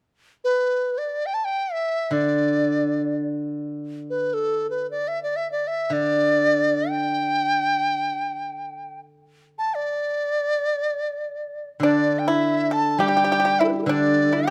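Graceful and pastoral, this short excerpt from a longer Chinese traditional chamber piece floats in free time as a reedy large dizi, with its buzzing membrane and vibrato, carries the melody up front from the opening moment, a ringing, silvery steel-string zither joins in accompaniment at 2.1 seconds, and a dry, percussive pipa adds a second line from 11.8 seconds, all caught by close, detailed microphones in light reverb.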